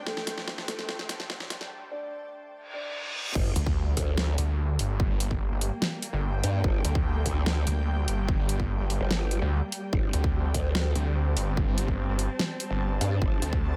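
Menacing and heavy, this half-time wobble dubstep cut opens with a soft, boxy felt-muted upright piano melody trailed by dub echo, set over dark, lush bowed strings that pump with the sidechain, a cloudy granular pad, and a background riser, reverse cymbal and sub drop as a drum fill and filter sweep build tension. At 3.4 seconds the drop hits as a punchy electronic kick joins the tape-warm dubstep kit with its huge snare, bright hats and crashes. Up front, a chorused, wobbling growl bass and a snarling, detuned sawtooth bass with distortion dominate inside a high-passed digital ambience.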